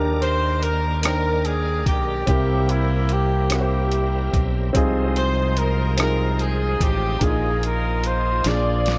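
A punchy, distant trumpet carries the melody from 0.2 seconds, its vibrato set in a roomy space and trailed by analog delay, alongside a tight jazz-style horn section with light vibrato. This slow gospel piece in Eb major moves in a straight 6/8 at 49 beats per minute, with a reverent, uplifting mood. A baby grand piano with long sustain and analog delay plays the accompaniment, while a full, shouting tonewheel organ holds sustained chords in the background through a slow rotary speaker and chorus vibrato. Up front, a bright, direct fingered electric bass anchors the low end beside a compressed, pitched-down, muffled sampler-style drum kit with a thumpy kick, medium-tuned snare, rim click and hi-hat. The harmony moves from Ebmaj7 through C7 and Fm7/C to Bb7sus4 and Bb7. A drum fill at 8.4 seconds closes this echo-heavy excerpt, which is cut from a longer piece and sits in light reverb.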